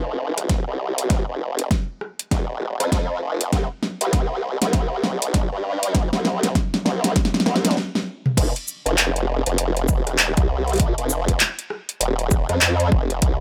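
Swaggering and gritty, this glitch hop excerpt moves at 99 BPM in 4/4 with a 61% swing on the sixteenths, tuned to A4 = 442 Hz. A formant-sweep wobble bass opens at 0.0 seconds, its detuned pulse and sine tones run through a formant filter with chorus, overdrive and a high-pass filter, spanning Eb1 to G2 with a fast attack and a compressed, sustained wobble. An overdriven pop drum kit joins at 0.4 seconds with a fat snare, metallic hats, handclaps, rim clicks, shaker, toms and crash cymbal, followed at 0.5 seconds by a punchy, layered electronic kick that sits up front. The opening stretch builds up through drum fills before a brief stop from 7.8 to 8.4 seconds, and then the drop hits at 8.4 seconds. The mix is dry with little reverb, and the drums were re-recorded in a small room.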